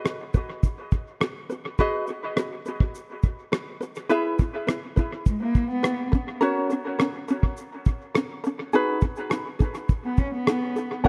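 Acoustic pop in a wistful, reflective mood, this short cut from a longer piece rests on a light, fingerpicked ukulele and a cloth-damped, thuddy drum kit of tight kick, rim click and shaker with a dark, rolled-off top. Both sit up front, trailed by dub echo, in an echo-heavy mix with a small room ambience. A nasal, boxy bowed cello with vibrato and portamento adds a brief second line at 5.3 s and again at 10.0 s, also echoing, before a warm, woody, slightly detuned upright piano with short sustain appears at 11.0 s.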